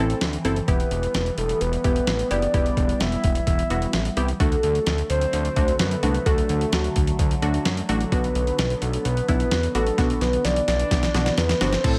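A dusty, sampler-style drum kit sits up front, its thumpy kick, fat snare, hi-hat and crash given a gritty, compressed, tape-warm character, and it closes with a fill from 10.0 to 11.8 seconds. This short synth-pop excerpt, cut from a longer piece, moves at a steady, straight four-beat pulse and carries a melancholic, nocturnal mood over chords of Am, Em, D and Bm. Beneath the drums, a thick, detuned sawtooth bass, also up front, holds the low end with an evolving filter sweep. A punchy, funky polysynth comp with a plucky filter and chorus supplies the accompaniment, while a swirling, bright analog pad with phaser and chorus sustains chords in the background. From 0.7 seconds a soft, round, octave-layered lead carries the melody, its dark tone shaded by vibrato, chorus and phaser, all set in a light digital reverb.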